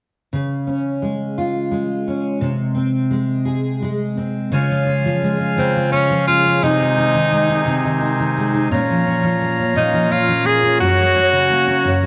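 Pop in a heartfelt, swaying 6/8, cut from a longer piece, where a full-bodied, double-tracked fingerpicked steel-string acoustic guitar opens at 0.3 seconds, a soft-reed pipe organ with an oboe stop and a touch of chiff adds sustained chords from 4.5 seconds, and a bright, vintage-toned tenor saxophone with vibrato, scooped notes and tape echo carries a jazz-style melody up front from 5.6 seconds, all set in a wet recital hall reverb with a dark, rolled-off top end.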